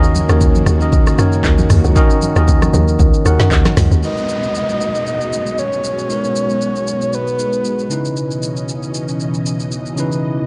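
Cut from a longer amapiano track, this passage opens on a drop at 116 BPM in G# minor. A hollow, bouncy log drum bass and an up-front afro-pop drum kit lead the way, the kit bringing a deep kick, woody snare, hi-hats, handclaps, shaker, rim clicks and toms. Around them, a clean tine electric piano plays accompaniment while mellow, vintage string-machine cellos hold sustained chords through an ensemble chorus. Acoustic congas with a thick skin sit in the background, and the swung sixteenths give the D#m7 groove a deep, late-night sway. Just after the congas drop out, at 4.0 seconds, the log drum bass falls away as the harmony moves to G#m9, and a breathy, flute-like synth lead comes forward with vibrato, chorus and delay while an electronic downlifter sounds beneath it. The chords shift to C#m9 as the lead ends at 7.9 seconds, and the drums stop just before the piano and strings close the passage, all within a dark, warm production with light reverb.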